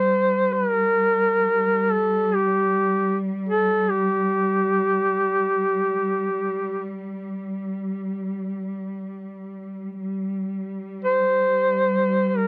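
A warm duduk carries the melody in a folk style, its vibrato and scooped notes giving this solemn, longing Caucasian lament a vintage character as it moves between G4 and C5. Beneath it, a muted chamber cello section bowed con sordino holds a dark, veiled drone on G3 from 0.0 to 12.5 seconds. The dry, close 1970s-style studio sound places both parts near the listener in this brief fragment of a longer piece.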